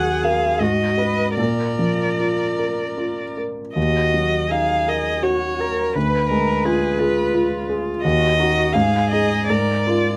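Classical piano trio in a slow romantic vein: this solemn, melancholic excerpt sways in a rubato 3/4, with all three players sounding together throughout its 10.2 seconds. A rich violin carries the melody up front with vibrato and expressive portamento, while a warm, smooth cello sings a close, even second line beneath it, and an intimate grand piano accompanies with its action noise clearly audible. The dry, detailed recording puts the listener near the instruments, and a diminished chord at 6.0 seconds darkens the harmony before the return to the home minor chord.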